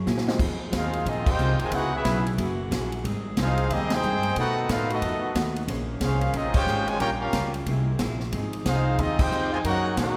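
A clear, up-front trumpet section carries the melody in this dramatic, sultry big band swing cut in F minor at 182 BPM, with a nasal straight-muted trombone section behind it, a mellow, very quiet saxophone section holding chords, a clean hollow-body electric guitar, a woody, growly pizzicato upright bass and a punchy, polished drum kit that opens with a fill before full-band accents land at 1.2, 3.9, 6.5 and 9.2 seconds, all set back in an airy concert hall.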